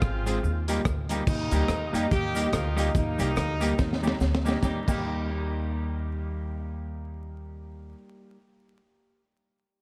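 Upbeat and cheerful, this swung ska excerpt at 143 BPM in Eb major opens with a clear horn section carrying a smooth, lightly vibratoed melody with tape echo until 4.2 seconds, over a woody, thumpy pizzicato upright bass and a gritty, saturated breakbeat drum kit with a high-tuned snare that plays a fill before stopping at 5.0 seconds along with a grainy cabasa. Entering at 0.3 seconds, a bright, picked clean electric guitar adds echoed accompaniment through to 8.4 seconds, while a background upright piano with audible action noise adds echoed stabs until 7.9 seconds, all set in light studio reverb with vinyl crackle.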